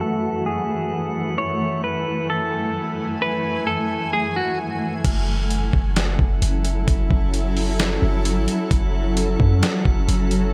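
A half-time 4/4 pulse takes hold at 5.0 s, when a gritty, pitched-down sampler-style drum kit with a thumpy kick, snare, hi-hat and crash arrives up front with a deep, boomy 808-style bass, grounding this hazy, ethereal cloud-rap fragment. Before that, a shimmering, detuned ambient pad with octave-up shimmer and sidechain pumping holds an F#m7 chord under a filter sweep, while a twangy, clean electric guitar picks a brief melody through digital delay until 4.6 s. A faint texture of glassy, drifting overtones hovers beneath the whole passage, set in light digital ambience.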